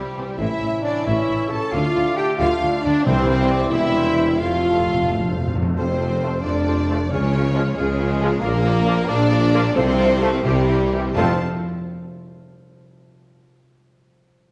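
This cut from a longer heroic adventure film score opens with most of the orchestra in 6/8 at 89 BPM in F major. Punchy French horns hold sustained chords up front, while a distant, intense violin section carries the melody in the background. Around it, an airy silver flute, a roomy oboe and a second, smooth-topped violin section trace supporting lines, violas fill in the accompaniment, and a ringing harp plays arpeggios. Cellos, double basses and a mellow tuba anchor the low end, joined by a bright, tight trombone section holding chords. Hard-mallet timpani on calf heads enter at 3.1 seconds, and an articulate fill from 4.4 seconds leads into the second phrase, where a very quiet clarinet adds another line at 5.8 seconds and the harmony turns through Db and Bb. The music slows toward its cadence, with the harp sounding alone until 12.6 seconds, and a wet scoring-stage reverb gives the whole triumphant, adventurous passage its sweep.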